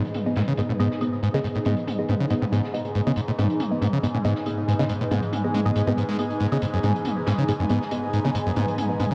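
Driving and hypnotic, this short cut from a longer peak-time techno track runs at 139 BPM in a straight 4/4, sitting on a single G# minor chord throughout. Up front, a screaming, squelchy acid line built from a resonant sawtooth snarls through a filter sweep between F#2 and G#3, its distortion thickened with chorus and delay. Beneath it, a muted, detuned dub chord stab pairs sawtooth and square waves with a sub octave, its short, mellow hits coloured by phaser and delay, while an airy, breathy pad with a noise layer drifts between D#4 and G#5 under chorus and phaser. In the background, a drone on G#2 shifts its resonant, ring-modulated overtones, and layered electronic toms with low-pass filtering mix with a lo-fi vintage kit of muffled hi-hat and medium-tuned snare, its top rolled off. The whole mix is soaked in a cathedral reverb with a 5.4-second tail, lending a dreamy, cavernous haze to the relentless groove.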